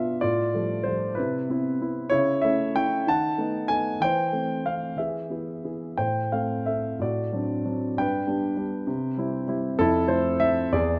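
Flowing in a rubato 6/8 at roughly 58-66 BPM counted in dotted quarters, this short classical passage for solo piano unfolds at an unhurried, breathing pace. A dark concert grand carries the whole 11-second fragment, which is cut from a longer piece. The instrument sits up front, mellow in tone with a deep bass, ranging from E2 to A5 in A minor, tuned to A4 = 441 Hz. The harmony drifts from Fadd9/A and Cmaj7 through A/C# and B7/D# to a cadence on E and Am, then moves on through D7/A, G and C before settling on Fmaj7 near 9.8 seconds. A moderate concert hall reverb with a 2.3-second decay surrounds the piano, lending the lyrical, reflective mood a sense of space.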